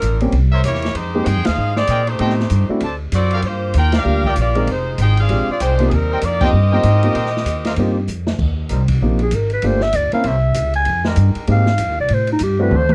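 Energetic, swinging big band jazz at 194 BPM in Eb major, where an edgy, tight saxophone section carries the melody over pizzicato upright bass with a woody, steel-string tone, a small-room drum kit with dark cymbals and a boomy kick, and a clear upright piano whose action noise can be heard. A vintage-sounding trumpet section adds soft-attack stabs, and the full band hits accents before a drum fill at 8.1 seconds leads into a raspy, growling clarinet solo from 8.4 seconds. Under the solo, a muted trombone section holds nasal, straight-muted chords, all captured in a dry, close 1970s-style studio sound.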